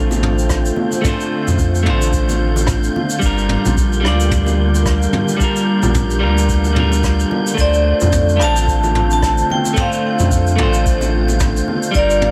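Smooth and relaxed, this sunset chillout excerpt sways at 110 BPM in a swung 4/4 over Dm7 and Gm7, with an up-front, slightly broken-up electric guitar picking accompaniment through delay, a lush, detuned pad sustaining chords with chorus and phaser, a round sine sub bass with tube saturation, an airy, breathy wind-like noise layer, a distant, roomy brush kit with rim click, shaker and toms, ringing congas in the background, and a dry, overdriven analog kick, before a metallic vibraphone with hard mallets and fast motor vibrato enters at 7.6 seconds to carry the melody.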